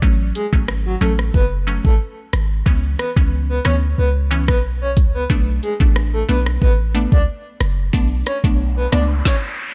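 A straight dancehall groove drives this sultry, hypnotic excerpt, with an up-front electronic afro-pop kit of deep kick, woody snare, rim click and dark hi-hats over a boomy, sine-like 808-style bass, while crisp, detuned, wave-folded chord stabs pluck through A6, C#m7 and Bm7 and a soft, breathy flute-like lead with vibrato, chorus and delay floats above from 0.4 seconds, all set in a digital ambience with a dulled top end until a riser enters at 8.6 seconds and the music stops at 9.3 seconds.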